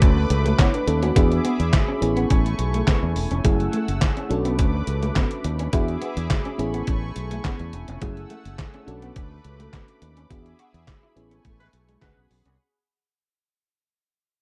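Dark, lightly reverberant digital ambience frames this slick, danceable early-eighties boogie funk fragment at 105 BPM, which fades throughout as a thumpy, tape-tinged 8-bit drum machine of kick, snare, hi-hat and handclaps sits up front beside a growly, punchy fingered bass, while a warbling FM electric piano, a bold, brassy sawtooth pad with chorus and vibrato, and a slightly broken-up, compressed guitar riff in the background move through Bm9, E7, Amaj9 and F#m9 before a band accent at 10.3 seconds and a brief, loose jazz-style horn line at 11.6 seconds land on C#7sus4.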